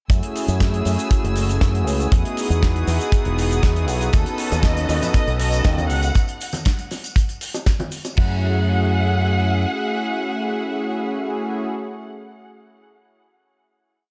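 A dry, polished nu-disco piece at 119 BPM in F# dorian, groovy and cosmic, built on an up-front four-on-the-floor kick, a damped 70s kit with a disco backbeat, a punchy envelope-filtered fingered bass playing a dotted rhythm, a detuned sawtooth analog pad with chorus and tape echo pushing rootless held chords, and a clear symphonic string section with 12-bit sampler grit and sidechain pumping, while from 4.1 seconds tambourine, congas and bongos join and a dark studio violin section sings an expressive portamento motif through the B7/D# and C#m9 changes before the drums drop out at 8.3 seconds and the piece settles onto a final F#m9 chord.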